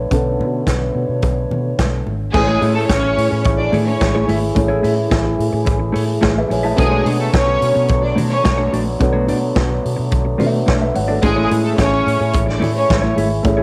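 Heard through the light small-room reverb of a home cassette recording, this celebratory, danceable disco excerpt opens on a boxy grand piano in the background, a distant, roomy French horn section holding sustained chords, a round, foam-muted fingered electric bass and a punchy, up-front vintage drum kit with dark cymbals alongside very quiet, ringing high-tuned congas, before a lush, vibrato-rich string section with its second line and a clean, compressed electric guitar join at 2.3 seconds.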